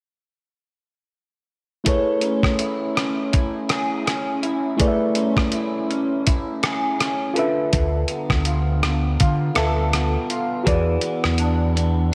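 Hazy and nostalgic, this indie bedroom-pop fragment drifts at a lightly swung pace as a reedy, worn, slightly out-of-tune electric piano with a cassette-tape cast and a picked, slightly broken-up electric guitar carrying analog chorus and warbly pitch drift ride over a gritty, compressed sampler-style kit with a thumpy kick, hi-hat and rim click, while an up-front fretless electric bass enters at 7.7 seconds under chords moving from Amaj7 to Dm6 and E7, all set in a moderate echo-chamber reverb.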